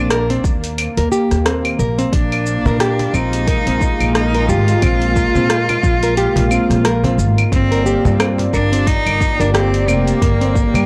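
Organic downtempo at 89 BPM with a hypnotic, meditative sixteenth-note swing, this excerpt sets a clear, bowed cello melody with vibrato and analog delay over a smooth sawtooth pad with chorus and sidechain pumping, fingerpicked nylon-string guitar arpeggios with finger squeak, a growly pizzicato upright bass up front, a tape-warm deep house kit of claves, hi-hat, rim click and shaker, an overdriven electronic kick, and a woody cajon entering in the background at 2.7 seconds, all moving through Ebmaj7, Bb7(no3) and Gm in a dry, gritty recording with transformer saturation and cassette tape character.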